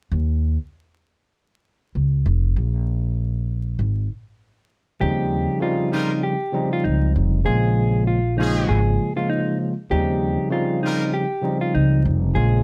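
A woody, pizzicato upright bass opens this gritty, moody hip hop cut alone, sitting up front over a swung sixteenth-note feel and vinyl crackle. At 5.0 seconds a clean, fingered electric guitar carries a mellow melody with slapback echo, joined by a tine electric piano played through its built-in speakers, while bright, lightly vibrato-tinged trumpet stabs with slapback echo punctuate the groove from 5.9 to 11.0 seconds. The production is dark and warm, with light reverb and harmony moving through rich extended chords, and this excerpt is cut from a longer piece.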